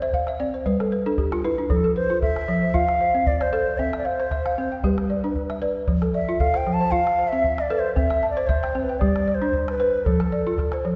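Joyful and warm, this short passage of West African string and xylophone music moves at 115 BPM in 4/4, with a lightly swung sixteenth-note feel in F lydian. The balafon opens with a fill before settling into arpeggios across its range, its woody, dry tone from soft rubber mallets sounding round and mid-forward up front. The calabash gives a deep, acoustic, close percussion pulse throughout, and at 1.7 seconds a hollow bansuri enters with a pure bamboo melody, shaped with vibrato and tongued notes. From 5.9 seconds the bansuri takes a solo over the cycling chords of F, C and G. A generous concert-hall reverb surrounds the ensemble, and the passage is cut from a longer piece.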